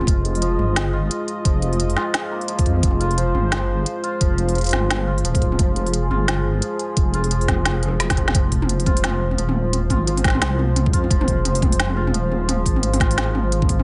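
Half-time drum and bass at 174 BPM in F minor, cinematic and spacious, this excerpt rides a swung sixteenth-note groove where an overdriven, knocking electronic kick joins at 0.1 seconds beneath an up-front organic electronic kit of woody snare, smooth hats and toms, with a drum fill at 7.8 seconds. A deep, wobbling sawtooth-and-sine bass with chorus and saturation sits forward in the mix, while a dark, moody analog pad holds sustained chords with slow attack, chorus, gritty 12-bit sampler texture and sidechain pumping. Alongside these, a hammered santur plays shimmering, ringing arpeggios through digital delay, all within light reverb and a softened top end.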